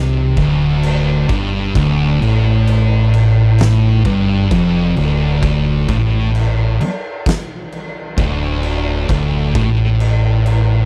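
Dry and close, this slice of a longer stoner and doom metal piece sets an ominous, hypnotic mood as an up-front fuzz guitar and a second, equally dark one in the background pick a low distorted riff over a round, punchy fingered electric bass with overdrive, while an oversized, low-tuned acoustic kit enters at 0.4 s with a boomy kick, fat snare, shadowy crash cymbal and a gritty, saturated, pumping room sound.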